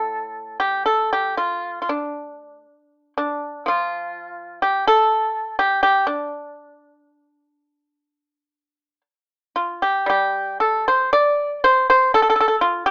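Elegant and contemplative, this short piece of traditional Chinese solo music features a single pipa, played with fingerpicks, carrying the whole 12.9 seconds with a free, rubato feel in two. The acoustic instrument sounds dry, percussive and up front, ranging from A2 to D5, and the music moves into a new section at 10.1 seconds before the cut ends it. A light reverb surrounds the rough home-demo mix, which has a thin, AM-radio quality.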